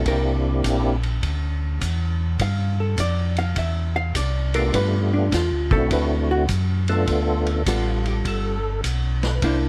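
Swinging in 4/4 at 103 BPM, this soulful, greasy soul jazz organ trio excerpt in G mixolydian opens with a dark, picked hollow-body guitar solo over chords moving from C9 to F69, while a round, mellow tonewheel organ carries the bass through slow rotary speaker, a fat, percussive organ with chorus vibrato and key click plays the melody briefly at the start and again from 4.6 seconds, and a gritty, saturated vintage drum kit with dark cymbals and a punchy kick sits in a close, dry, detailed room.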